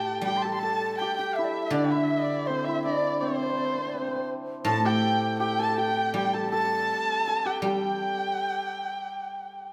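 Chinese traditional chamber music in a festive, pastoral mood, heard as a short cut from a longer piece, with a free, rubato feel. A dark, woody erhu carries the melody up front with vibrato and portamento, while a breathy large bamboo dizi with a buzzing membrane and crisp attack plays a close-miked second line in the same register, and a mellow, shimmering hammered dulcimer adds another line below. A silvery guzheng played with fingerpicks rings out prominently in the low accompaniment, and all four sit in a wet recital-hall reverb that lingers for 1.7 seconds.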